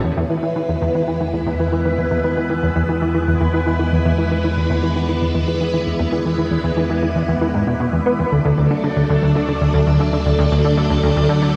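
A punchy, funky analog bass riff with a plucky filtered snap sits up front in this luminous, cosmic stretch of sequencer-driven space music at 116 BPM, cut from a longer piece and colored by ensemble chorus and delay. A swirling, vintage string machine holds bright sustained chords through its phaser, while a warbling analog drone enters at 1.0 seconds with pulse-width movement beneath, and an airy, wind-like tuned noise texture fades in far in the background. Harmony moves from E to D at 8.3 seconds, all bathed in a wet plate reverb and an echo-heavy mix with cassette tape character.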